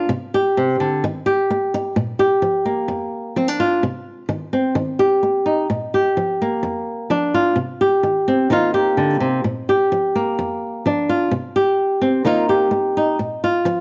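Joyful and carefree, this short highlife excerpt moves at 128 BPM in Bb major with a light 16th-note swing. A lone fingerpicked flamenco guitar carries the entire excerpt from start to finish, its acoustic tone sitting up front and spanning F2 to G4 as it cycles through open, suspended and sixth chords. A moderate echo-chamber reverb and small-room ambience give the guitar a gentle sense of space.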